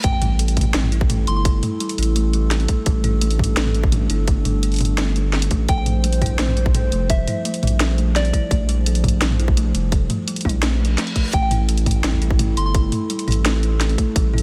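A heavy half-time drum and bass groove drives this cinematic drop, with a tight, up-front electronic kick and a layered kit of filtered hi-hats, toms and a cracking snare under a deep, saturated sub bass. A dark, detuned analog pad breathes with sidechain pumping while a buzzing, woody kalimba plays dry arpeggios. A soft, pure FM synth bell floats above in short chorused, phased melodic phrases, and a reverse cymbal and sub drop sit in the background, the drop hitting as an impact at the start and the cymbal rising again at 10.8 seconds.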